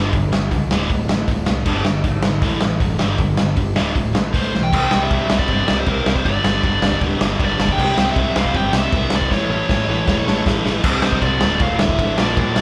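Raw and aggressive, this punk rock excerpt charges along at 157 BPM, with a bright distorted electric guitar and a crunchy guitar in the background riffing over a growling, overdriven picked bass. A gritty garage drum kit sits up front with a punchy kick and plays a fill from 9.3 to 10.8 seconds. A dark high-gain lead guitar enters at 4.4 seconds with the melody, and a light reverb gives the sense of a band playing live in one room.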